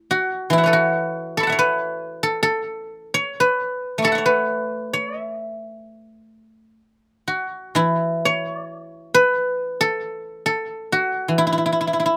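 Dry and close, captured in the open air, this short passage cut from a longer piece of traditional Chinese solo plucked-string music features a lone acoustic guzheng played with fingerpicks, its silvery, ringing tone sitting up front as it spans a broad range in the E zhi mode, tuned to A4 = 444 Hz, and moving in a loose, rubato 4/4 around 60-72 BPM with a pastoral, elegant mood before turning to a new section at 7.8 seconds.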